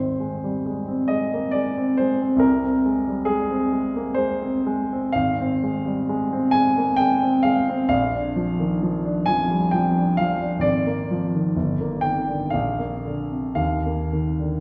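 Classical romantic nocturne for solo piano, cut from a longer piece, with a yearning, melancholic mood and an unhurried rubato feel in three-four time. A grand piano carries everything alone from 0.0 to 14.6 seconds, its tone warm, polished and present, with a short sustain. The harmony moves from Ab through Fm/Ab to Bb and Bb7/Ab, then settles on Eb/G, Bb and finally an open Eb5 near 13.6 seconds. Though the piano sits up front, the room places the listener further back, and a wet scoring-stage reverb gives the instrument a long, glowing halo. The playing spans the range from G1 up to Ab5.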